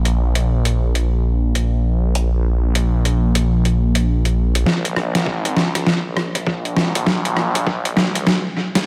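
An echo-heavy mix with light reverb frames this playful, gritty glitch hop clip in Bb minor at 100 BPM with swung 16ths, where a swirling, thick, phaser-soaked detuned saw bass sits up front beside a pitched-down, sampler-style boom bap kit of hi-hat, rim click and medium-tuned snare carrying tape echo, and a thumpy, compressed electronic kick slips into the background at 4.7 s as a drum fill and build-up run to the cut at 8.9 s.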